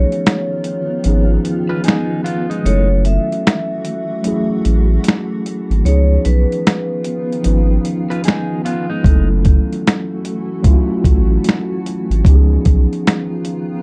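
A gritty, up-front sampler-style drum kit with a thumpy kick, snare, hi-hat and finger snaps drives this melancholic, reflective lo-fi hip hop excerpt at 75 BPM with swung 16ths in F# dorian, joined by a thick, saturated sub bass, a mellow tine electric piano with cassette-tape colour, and a cloudy granular pad holding sustained chords that alternate between C#9 and F#m7, while a bright, ringing vibraphone carries the melody through analog delay until 7.7 s and a dark, slightly broken-up electric guitar adds a delayed second line at 1.7 s and 8.1 s, all in a dry, dark production.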